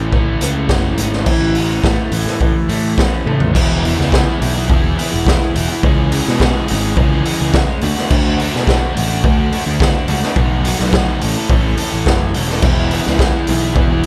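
A bright, double-tracked overdriven guitar riff and a punchy fuzz bass open this wistful, carefree indie rock excerpt in A major at 106 BPM, joined by an up-front raw garage drum kit with a high-tuned snare, a boomy kick and a gritty, saturated small-room sound, and a drum fill at 3.3 seconds leads into a passage that moves through E, C#m, D and B7 before returning to A and E6, all in a dry mix.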